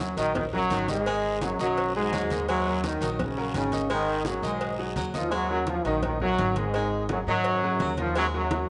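Passionate and fiery, this salsa excerpt drives along at 169 BPM in Eb minor, led by a bright, punchy trombone section up front with light vibrato, while a baritone saxophone with a smooth top carries a second line in the background. Underneath, a clear, slightly worn grand piano comps and a woody pizzicato upright bass anchors the harmony as it moves between Ebm, Abm7 and Ebm7. Low-tuned congas with a thin skin, a tight, high-tuned cowbell played very quietly and a raspy guiro that drops out at 5.3 seconds fill out the percussion, all set in a moderate echo-chamber reverb.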